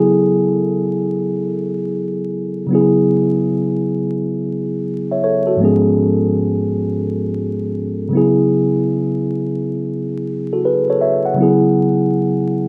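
Through vinyl crackle, a rough home-demo mix and a wet studio reverb, this cosy, nostalgic hip hop fragment at 83 BPM in A major features a lone mellow tine electric piano, up front and clean with a cassette-tape tint, heard through built-in speakers, gently swinging through lush chords from Amaj13/C# to C#7/G# at 5.6 seconds and E69/C# at 8.1 seconds.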